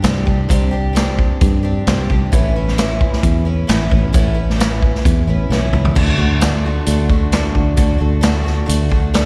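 A woody, shimmering twelve-string acoustic guitar with octave-doubled strings and a slapback echo carries this jangly, open-road folk and heartland rock excerpt at 132 BPM in D mixolydian, moving from Csus2 to Aadd9. A round, foam-muted fingered electric bass and a vintage drum kit with a punchy kick and a rolled-off top sit up front, and the drums play a fill at 5.5 seconds before the music lands on D at 6.0 seconds. The sound is that of a live gig heard through the venue's PA, with small room ambience and recital hall reverb.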